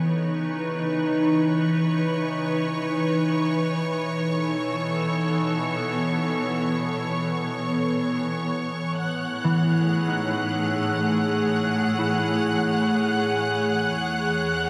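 In free time and tuned to A4 = 439 Hz, this reflective, spacious ambient piece is cut from a longer work and drifts through C#m9, B9sus4, Amaj7 and E6 under a huge, wet reverb with a 7.8-second tail. Up front, a glassy FM pad holds sustained chords with a slow attack and long release, its ethereal tone thickened by ensemble chorus and its own built-in reverb. Beneath it, a rich studio cello section fades in from the start to carry the bass, bowed with vibrato and sitting focused but in the background. High above, a symphonic violin section also fades in across the whole passage, adding a lush, smooth texture with an even, vibrato-laden top. At 9.4 seconds a concert harp enters with mellow, thumb-plucked arpeggios that ring out through a diffuse ambient delay until 14.6 seconds.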